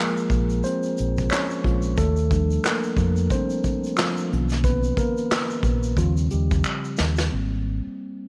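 A lightly reverberant small-room sound frames this soulful, sensual neo-soul R&B fragment at 90 BPM with a 16th-note swing, where a mellow tine electric piano, clean and up front, carries a solo over maj9 and 13th chords from a rootless Gbmaj9 to Abmaj9, supported by a round, dark fingered electric bass, a vintage brush kit with punchy kick, handclaps and a rolled-off top that closes with a fill at 6.6 seconds, and a distant egg shaker with finger snaps.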